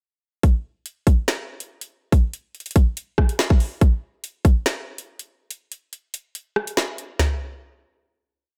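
An electronic drill drum kit opens the piece at 0.4 seconds, setting an ominous, tense hip hop mood at 142 BPM in 4/4 with a half-time feel. The produced beat sits up front, built from a hard-clipped kick, a woody snare, metallic hats, rim clicks and toms. Skipping hi-hats and fast hi-hat rolls drive the drill pattern through the short hook. A break arrives at 5.5 seconds, and the piece closes with a final hit beginning at 7.2 seconds. The sound is dry, with little reverb around the kit.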